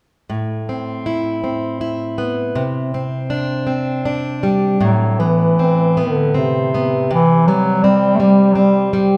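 A Celtic folk slow air in A dorian, this mournful, longing excerpt moves at a rubato 80 BPM in 3/4. A plugged-in steel-string acoustic guitar, fingerpicked and up front, opens alone at 0.3 seconds, laying down the accompaniment through Amadd9 and Csus2 chords. At 4.8 seconds a bass clarinet enters with the melody, its tone warm yet distant in a classical solo style, sitting slightly louder than the guitar. The guitar carries on beneath it through Amadd9 and a bare C5 chord until 9.2 seconds. Both parts sound in a wet recital hall with a reverb that lingers for 1.6 seconds, giving the clarinet a roomy, church-like glow.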